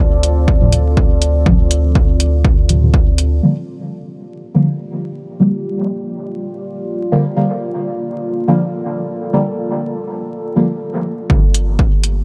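Hypnotic and cavernous, this excerpt of dub techno moves at 122 BPM in a straight 4/4 in G minor, cut from a longer piece and laid over a bed of vinyl crackle with light reverb. A deep, moody ambient pad built from detuned sawtooth unison and a sine sub octave sustains dark chords throughout, its slow attack and long release softened by chorus and built-in reverb while sidechain pumping makes it breathe. A punchy, tape-warm kick sits up front with an analog hi-hat, both re-recorded in a small room, joined by a round, soft sub bass; these three play only until about 3.4 seconds, drop out, and return near 11.3 seconds. From 0.6 seconds until about 11.4 seconds a mellow, wave-folded chord stab runs above the pad, carrying the track through the middle stretch, its fast attack and short decay colored by chorus, phaser, sidechain pumping and trailing dub echo. The harmony shifts from Dm7 to Gm7 at 3.4 seconds, settling the groove into its home key.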